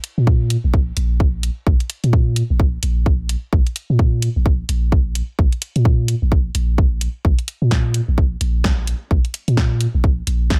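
Minimal techno with a hypnotic, quirky mood, cut from a longer piece and driven by a swung sixteenth-note feel in 4/4. A house drum kit opens at 0.0 seconds with a punchy snare and bright hi-hats, sitting lower in the mix than the other parts. A deep sine sub bass arrives at 0.2 seconds, ranging from Bb1 to Bb2 with a pitch-drop attack and sustained notes, pumping under sidechain compression and placed up front. An up-front electronic kick joins at 0.3 seconds, layered and punchy, and stands as the loudest drum element. The sound sits in a small room ambience, keeping the spare arrangement tight and close.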